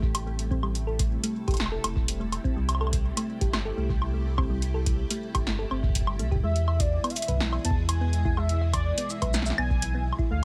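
A dry IDM excerpt at 124 BPM in straight 4/4, eerie and cerebral, where a deep round sine sub bass and an analog electronic kick sit under an up-front drum machine of punchy snare, metallic hats, shaker and woodblock, while a silky vintage string machine holds phased, ensemble-chorused chords over Am7, C6 and E, a tine-like FM pluck with dub echo runs gentle arpeggios from 0.3 seconds, and a velvety detuned sawtooth lead with vibrato and digital delay enters at 6.4 seconds to carry the melody.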